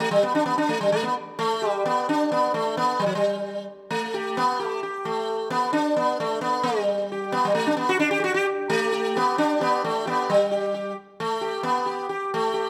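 Indian classical music in raga hamsadhwani on G, this short excerpt from a longer piece carries a devotional, radiant mood. A solo sitar plays alone throughout, sitting up front with a bright, buzzing tone and a shimmer from its sympathetic strings ringing behind each plucked note. The tempo sits around 132 BPM in a straight 4/4 and gradually speeds up over the whole passage. The playing stays within a compact range from F#3 to G4, shifting into a new section at 10.3 seconds before the clip ends at 12.7 seconds. A moderate recital hall reverb surrounds the instrument, giving it an open, resonant space.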